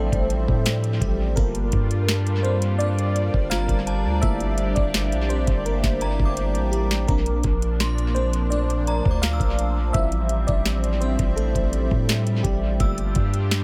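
A dreamy FM electric piano with a soft pad layer leads this short contemporary R&B cut, carrying a solo across the full 13.6 seconds, its detuned tone coloured by chorus, phaser and dub echo. Beneath it, a lush, thick unison pad holds sustained chords with a slow attack, airy and bright, breathing with sidechain pumping alongside its own chorus and phaser. A deep, sine-like 808-style bass sits up front with long, mellow notes, while a smooth electronic drum kit enters at 0.1 seconds with a knocking kick, sharp snare and metallic hats, adding a drum fill from 6.4 to 7.1 seconds. High in the background, an inharmonic synth chime rings out with a long release through ensemble chorus, phaser and dub echo. At a straight 84 BPM in G dorian, the harmony drifts from Am7 to Gm7 and opens onto Bbmaj9 before returning, giving the dry, echo-heavy mix a longing, sensual mood.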